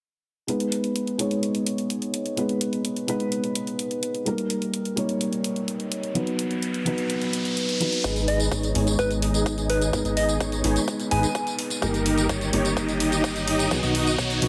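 A straight 4/4 pulse of overdriven electronic hi-hat and tambourine drives this euphoric, emotional festival progressive house cut, beneath a dark, boxy felt-muted upright piano with audible action noise, sidechain pumping and tape echo, while an electronic riser enters at 6.0 seconds. At 8.0 seconds a build-up arrives with a punchy overdriven kick, a fat, wave-folded analog bass and a huge, detuned supersaw riff that sits compressed and up front, pumping through a swept low-pass filter and tape echo. Moments later a round, warbling FM synth lead sings the melody through chorus. A lush hall reverb surrounds the whole piece.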